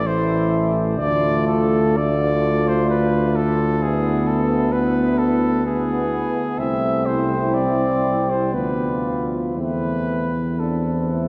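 Classical brass band music in a hymn-like style, this yearning, melancholic passage in A minor moves slowly in 3/4 at around 57-67 BPM with a rubato feel, cut from a longer piece. A close-miked cornet carries the melody up front, its tone warm, while a distant, roomy French horn section holds a second line in the background. A clear euphonium and a very quiet trombone with light vibrato fill in the accompaniment, and a mellow tuba with a soft attack and smooth top anchors the bass prominently. The harmony passes from D minor through E7 over D and A minor over C to a diminished chord over D before settling on A minor over E near 9.6 seconds. All five parts sound together throughout, bathed in the long, wet reverb of a cathedral-like church or concert hall.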